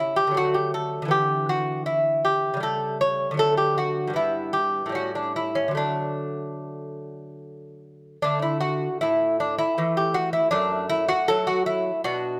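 Set in a moderate recital-hall reverb, this radiant, serene fragment of a baroque-style classical dance in triple time features a solo lute, bright and delicate with fingerpicked gut double strings, some doubled at the octave, sitting up front and moving with a gentle rubato as its opening section gives way to a new one at 8.2 seconds.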